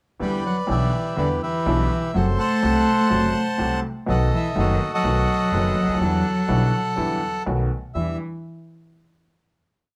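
Tango, tense and dramatic, set in a rubato four with a reedy, dark bandoneon carrying a motif-based melody of period phrases up front under plate reverb, while a single bowed cello sings a smooth, vibrato second line in octave doubling. A clear, slightly detuned upright piano with long sustain and a woody, growly pizzicato upright bass drive a marcato tango rhythm in four through Em7, F#dim and B7 harmonies. Close, detailed microphones in a moderate club room frame this short whole piece, which resolves on a final Em7 chord at 7.9 seconds.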